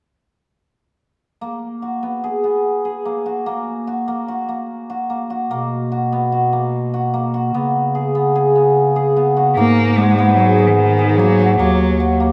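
Set in an uneven 5/4 at 147 BPM with a straight feel, this hypnotic, restless contemporary chamber piece in G# minor opens at 1.4 seconds with hammered, shimmering cimbalom arpeggios ringing over chords that move from G#m9 through F#/A#, B5 and C#5. A mellow, roomy bass clarinet takes the bass line in classical style from 5.5 seconds. At 9.6 seconds a single bowed cello enters with a rich, expressive melody, soft in attack and colored by vibrato and portamento, all within a moderate recital hall reverb in this portion cut from a longer work.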